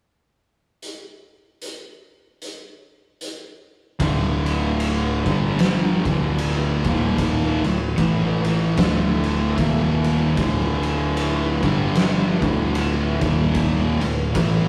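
A slow 75 BPM stoner and doom metal groove in 4/4 with a swung eighth-note feel opens with an oversized, low-tuned drum kit alone, its boomy kick, fat snare and dark cymbals sounding saturated and up front in a rough rehearsal-room recording. At 4.0 seconds two thick fuzz guitars, one up front and one in the background, enter together with a growling overdriven electric bass on a heavy, hypnotic D minor riff that moves between D5, G5, Eb5 and A5. From 5.3 seconds a very quiet, tense, string-like drone with slow attack, vibrato and detuned sawtooth shimmer hangs quietly behind them in this fragment of a longer piece.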